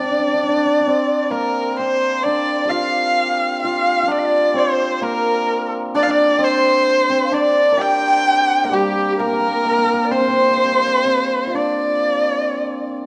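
A single erhu, a hammered dulcimer and a large dizi begin together at the opening of this tender, wistful passage of Chinese traditional chamber music, which is cut from a longer piece. The bowed erhu carries the melody up front, its single player shaping each phrase with a soft attack, vibrato and expressive portamento that give it a warm, expressive quality. Beneath it, the hammered dulcimer sounds a second line in a lower register, also up front, its acoustic strings shimmering and ringing. The large dizi adds another second line in the same range as the erhu, with a reedy, airy bamboo tone, a buzzing membrane, vibrato, a soft attack and rolled-off highs. A moderate scoring-stage reverb gives the ensemble a sense of space, and the passage runs to about 13 seconds.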